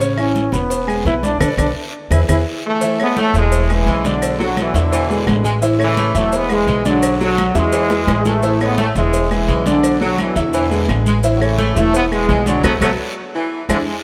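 Salsa at 171 BPM with a sunny, danceable mood, this brief cut from a longer piece opens on a clear solo trombone over vintage grand piano, thumpy gut-string upright bass, bright congas, round low-tuned cowbell and bongos, woody claves, raspy guiro and grainy maracas, before a brilliant, punchy trombone section with tape echo takes the melody up front at 2.7 seconds and a clear saxophone section adds a second line in the background from 3.2 seconds, all cycling through A, E7 and Bm7 in a roomy plate reverb with band accents and drum fills.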